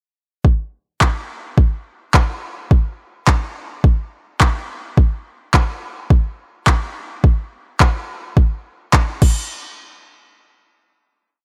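A smooth, electronic R&B drum kit sits up front with a soft, tape-warm kick, handclaps and crash cymbal driving a straight four-on-the-floor dance-pop beat through this short, energetic pop piece, playing from 0.4 to 9.4 seconds before a final hit rings out into digital ambience.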